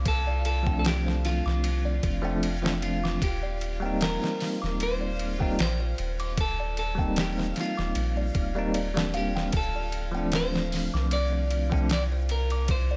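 A twangy, picked electric guitar melody with tape echo opens this brooding, cinematic trip hop fragment, joined at once by a round, deep dub sub bass with tube saturation, a delicate, slightly out-of-tune music box tinkling arpeggios in the background, and a reversed, granular texture that drifts dreamily behind everything. A gritty, pitched-down sampler-style kit sits up front from 0.1 seconds with a thumpy kick, snare, hi-hat and ride under a lazy swing, and a bell-like tine electric piano with tremolo and tape echo adds accompaniment from 0.6 seconds. The harmony moves from Dm7 to Cm7/Eb and back, all set in a digital ambience.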